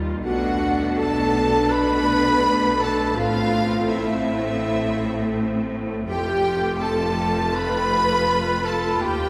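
A clear, focused violin section carries a tender, moving melody from 0.3 s in this rubato cinematic fragment, with a very quiet second violin section, an airy silver flute and a distant clarinet shading a second line, while rich violas, mellow French horn chords, and smooth cellos and double basses hold a lush bed under Bm7, Am and F chords, all bathed in the long, cavernous reverb of a cathedral.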